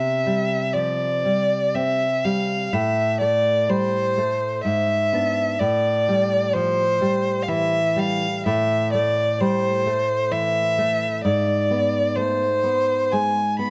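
The rhythm moves in a flexible triple metre, with uneven beats and a rubato feel that lets the phrases breathe freely. This elegiac, melancholic duo for violin and classical guitar is cut from a longer piece and runs 13.7 seconds. A single bowed violin carries the melody up front in its upper register, its warm, expressive tone shaped by vibrato and portamento and softened by a plate reverb. A dark, fingerpicked nylon-string guitar plays the accompaniment beneath it, also up front, with the occasional finger squeak adding an intimate, acoustic touch. The harmony drifts from C to Am and through E7/G#, Am7 and Am before ending on a G#dim, all heard within a moderate studio room that keeps the performance close and sorrowful.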